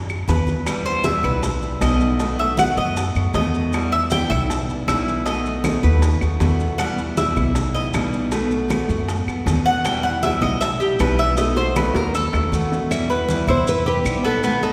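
Sultry and warm, this Cuban son and guajira cut moves at 157 BPM in E harmonic minor, swaying between Em and B7 as a bright, metallic Cuban tres with double strings takes an up-front solo from the start until 12.9 seconds. Beneath it a dark, growly pizzicato upright bass and a boxy picked steel-string acoustic guitar hold the accompaniment, while low-tuned congas with thick skin, round, vintage-sounding bongos, woody claves and grainy, close maracas fill out the percussion, with a drum fill from 11.4 seconds. At 12.9 seconds a full-bodied, fingerpicked nylon-string guitar enters with the melody, all set in the lingering reverb of a concert hall.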